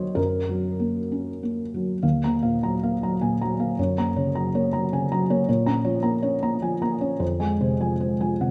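A rubato lilt in three carries this brief, melancholic neoclassical minimalist fragment, cut from a longer piece, where a solo felt-muted upright piano sits up front with a dark, thick-felted hush, short sustain and audible action noise, its chords moving from Gb through Ebmadd9, Bbm and Fm as the opening idea gives way to a second section at 2.0 seconds, all held in a moderate scoring-stage reverb that keeps the mood intimate.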